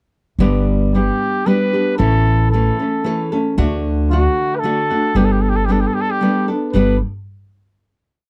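A vintage-toned classical-style trumpet enters at 1.0 s with a proud, romantic, motif-based solo melody in sentence-like phrases over a full-bodied nylon-string guitar, fingerpicked and strummed in sixteenths with open chord shapes, and a woody, thumpy pizzicato upright bass on gut strings playing root and fifth on the main beats, both starting at 0.4 s, in this short, complete mariachi piece in G major at 114 BPM in 3/4, which moves through G, A, D and Gadd9 before a final chord at 6.7 s, all captured as a dry, close 1970s-style studio recording.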